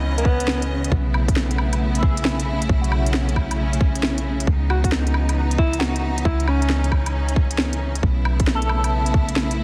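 Future garage at 135 BPM in C# minor, with swung sixteenths and a ghostly, wistful mood, this excerpt moves between C#m9 and B9sus4 under digital ambience and a dense master dusted with vinyl crackle. A soft, round 808-style bass and lush, bowed string chords pump with sidechain, beneath an up-front, overdriven electronic kick and a kit of woody snare, crisp hats and woodblock, while a twangy envelope-filtered electric guitar sits in the background with tremolo, pumping and dub echo. A breathy alto saxophone in subtone carries the melody briefly at 0.2 s and again from 4.7 s to 6.9 s, wrapped in dub echo.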